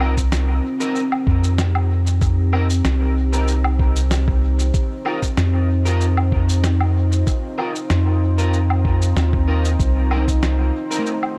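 Ambient dub at 95 BPM in C minor, this hazy, meditative passage is cut from a longer piece and moves through Cm7 and F7sus4 over a lightly swung 16th-note feel. A deep, moody pad with a slow attack and long release holds sustained chords throughout, thickened by detuned unison layers, chorus and its own reverb. Up front, a soft, round sub bass anchors the low end, while a dark, slightly broken-up electric guitar adds picked stabs treated with analog chorus and dub echo. The drums sound sampler-style, compressed and muffled, as if re-recorded in a large room: woodblock, shaker and a medium-tuned snare play from the start and trail off into dub echo, and a thumpy electronic kick joins them at 0.2 s. At 10.2 s a ringing handpan played with soft fingertips slips in behind everything else with airy arpeggios and tape echo, while the mix overall stays fairly dry.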